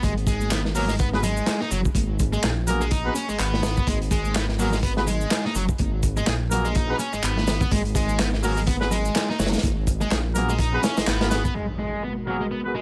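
Swaggering and energetic, this 125 BPM breakbeat cut in G# minor swings on a crunchy, saturated breakbeat kit with a punchy kick, a rumbling detuned saw bass, a tape-warm electronic shaker and handclaps, soft vintage congas, a sludgy overdriven double-tracked guitar riff with delay and a jazzy horn section stabbing with light vibrato from 0.7 seconds, until a band accent at 11.1 seconds gives way to an electronic impact at 11.5 seconds and a swirling phased analog pad at 11.9 seconds.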